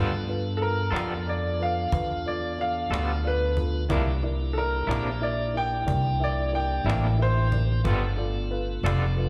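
Heard through a live venue's PA with recital-hall reverb and light studio ambience, this gritty, rollicking slow blues in 12/8 at 61 BPM moves over G9 and C9 chords, with a brilliant upright piano carrying the solo line up front from 0.6 s through slapback and tape echo, a woody pizzicato upright bass on steel strings, a hard-handed cajon with faint snares entering at 0.3 s, a twangy, slightly broken-up electric guitar through a small old amp with tremolo, a dark, mellow grand piano with audible action noise, and a piping, lightly overdriven tonewheel organ with key click turning on a slow rotary speaker.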